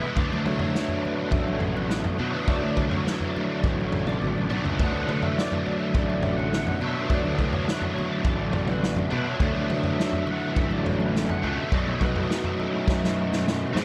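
This short excerpt of hypnotic, trippy psychedelic rock opens with a percussive tonewheel organ holding sustained chords through a slow rotary speaker and light overdrive, joined at once by a bright, double-tracked overdriven electric guitar riff, itself spun through a rotary speaker, and a very quiet, buzzing, shimmering tanpura drone. At 0.2 seconds a fuzzy, round picked electric bass and a vintage drum kit with a punchy kick, medium-tuned snare and toms arrive over a D chord, followed a moment later by very quiet, damped congas played with hard hands. The tempo sits at a steady 104 BPM in a straight 4/4, with the guitar up front while the fat organ and overdriven bass stay in the background. The drums have a natural small-room sound with a rolled-off top, and fills break through at 4.2 seconds and again from 12.9 seconds, as the harmony shifts to B7 at 11.7 seconds. A light reverb glazes the mix as the piece rolls on past the cut.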